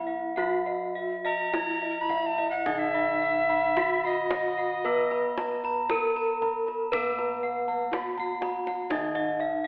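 In a straight four-beat pulse, this hypnotic, shimmering fragment of Javanese gamelan sets an up-front, dark bronze metallophone melody with paired-tuning beats over a boxy metallophone accompaniment, mellow padded bossed-gong arpeggios, bright horn-mallet metallophone arpeggios touched with slapback echo, and round bossed gongs in the bass, while a breathy, reedy alto recorder with vibrato and chiff adds a second line from 1.3 to 5.6 seconds and a tight, dry kendang enters at 1.5 seconds and plays a fill at 8.2 seconds, all heard through a telephone-like filter in a recital-hall reverb.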